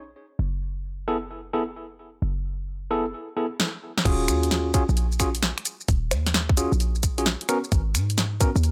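A punchy, sine-toned 808-style bass opens this skippy, late-night two-step UK garage excerpt, joined at 1.1 seconds by clean tine electric piano stabs with digital delay, before a punchy analog drum machine of snare, hi-hat, shaker, finger snaps, bongos and crash cymbal fills in at 3.6 seconds and a tight, layered electronic kick arrives with the swung drop at 4.1 seconds over minor eleventh chords in a digital ambience.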